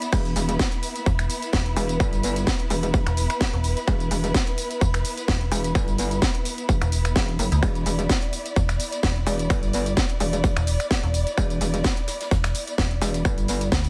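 Bass house at 128 BPM in E minor, this swaggering, aggressive excerpt rides a swung sixteenth-note feel, tuned slightly low, and holds a single E5 chord throughout its 13.9 seconds. An overdriven, punchy electronic kick sits up front alongside a metallic wobble bass, saturated and compressed with chorus and sidechain pumping, entering at 0.1 s. A second metallic FM bass, digital and mellow with decaying notes and overdrive, joins at 1.1 s and also pumps with sidechain. A layered garage kit supplies a cracking snare, bright hi-hats, crash, finger snaps and tambourine, while a very quiet brush kit adds ride cymbal and snare from a small room. Above the low end, a lush bowed string section holds sustained chords with vibrato and portamento, pumping in time, and an ethereal, airy pad with ensemble chorus, phaser and built-in reverb lingers in the background on a high B.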